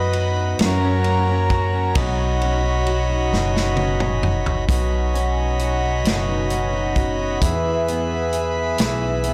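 This six-eight pop ballad, cut from a longer piece, has a heartfelt, tender mood and moves in a slow, straight lilt. A double-tracked, fingerpicked steel-string acoustic guitar carries the accompaniment with a full-bodied dreadnought tone and audible finger squeak. A pedal harmonium sits up front, holding reedy, breathing, dark chords above, while a pizzicato upright bass, also up front, adds a woody low end with tube saturation. A natural country drum kit enters at 0.1 seconds with a punchy kick and a medium-tuned snare, and it plays a fill from 3.3 to 4.7 seconds before the opening phrase repeats. The harmony moves from B/F# and F# to Badd9 and E, and the whole recording is blown-out and overdriven, with light reverb and the ambience of a small room.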